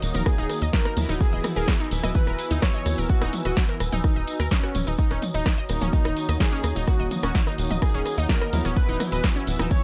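A straight 4/4 pulse at 127 BPM drives this dramatic, cinematic melodic techno excerpt in Eb phrygian. A punchy, up-front layered kick enters at 0.3 seconds over a tape-warm analog drum machine of hi-hats, rim clicks, snare and toms, a jingly acoustic tambourine, and a tight, driving sawtooth sequencer bass. Above, a bright, detuned unison pluck spins wave-folded arpeggios through tape echo while a thick, bold unison lead carries the melody with vibrato. In the background, fat, brassy synth stabs with chorus punctuate the chords while a deep, moody sub-octave pad holds them as they move between Ebm7 and Eadd9/Eb. Sidechain pumping runs on the pad, brass, bass, pluck, lead and the drum machine's hats and toms, all under a digital ambience.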